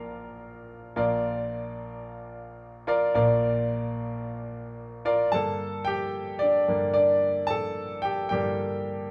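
A clear, polished concert grand piano plays alone in this hopeful pop excerpt, its deep bass and short sustain sitting up front in a moderate studio reverb with a light sixteenth-note swing, moving from a Bb chord to G minor at 5.3 seconds.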